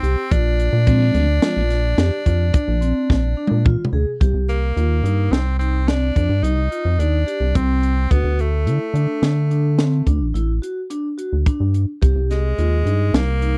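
Progressive instrumental band music in an intricate, tense 7/4, where a raspy, gritty tenor saxophone carries the melody over ringing vibraphone arpeggios, a rubbery, bouncy square-wave bass and a crisp fusion drum kit with a punchy kick and high-tuned snare, while a lightly overdriven tonewheel organ with fast rotary speaker appears briefly in the background from 0.9 to 1.6 seconds and a drum fill at 3.1 seconds leads into the next section, all in a dry, close 1970s-style studio sound.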